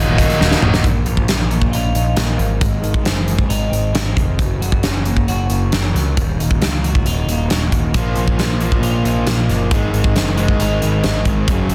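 A brooding, cathartic stretch of quiet-loud alternative rock opens on a burst of two bright guitars, a thick fuzz guitar and a distorted electric guitar playing a riff over Ebm, joined by a punchy, overdriven fuzz bass that stays up front throughout. The big acoustic drum kit comes in at 0.2 s and plays a fill from 0.4 s that leads into the main section at 0.9 s, its punchy kick and medium-tuned snare ringing in a big room. Both heavy guitars drop out at 0.8 s, leaving a twangy twelve-string electric guitar playing clean, bright arpeggios through phaser and digital delay, set back behind the bass and drums. The chords move through Bbsus4, Ab, Gb and Ebm7 at a straight 136 BPM in 4/4, and the compressed distorted guitar crashes back in at 7.9 s to restate its riff. Light reverb sits over a dense, heavily limited master with a faint mains hum, and the passage is cut from a longer piece.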